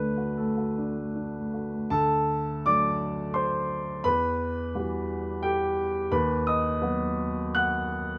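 A dark, mellow baby grand piano sits up front in a moderate studio reverb, its long sustain giving each chord a smooth, vintage bloom. This is a short cut from a longer neoclassical minimalist piano piece, played solo in 3/4 with a rubato feel that drifts between 76 and 89 BPM. The mood is melancholic and wistful, opening on a D chord before the passage shifts at 1.9 seconds into a new section. The harmony moves to Emadd9 at 4.1 seconds and then to B/D# at 6.1 seconds. The piano ranges from D2 up to F#6, its low and high registers framed by the room's ambience.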